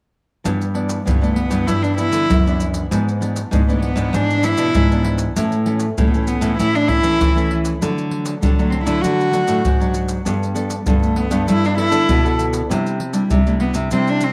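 A close, bowed cello carries the melody from 1.1 s with light vibrato, a soft attack and an airy sul tasto tone over two fingerpicked classical nylon-string guitars, one playing chordal accompaniment with audible finger squeak and the other a bass line, while a tight surdo, maracas and pandeiro sit up front in this joyful, sunny samba and choro passage in G major at 98 BPM, moving through G6, E7/G#, A, D, Gadd9 and Cadd9 in a studio ambience with moderate spring reverb.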